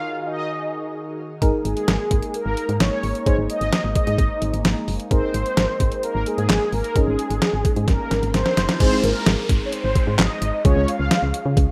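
A straight 4/4 pulse at 130 BPM drives this melancholic synth-pop excerpt, where a brassy, detuned synth lead with chorus, tape echo and shimmer reverb carries the melody over a dark FM electric piano with tremolo and a swirling, nasal phased pad in the background; at 1.4 seconds a thumpy, tape-toned 8-bit drum machine and a punchy, round FM bass kick in, and a drum fill at 7.9 seconds and a background riser and downlifter lead into an Ab chord at 8.8 seconds, moving to Db at 10.6 seconds, as the pad drops out, all in a rough home-demo mix with light reverb.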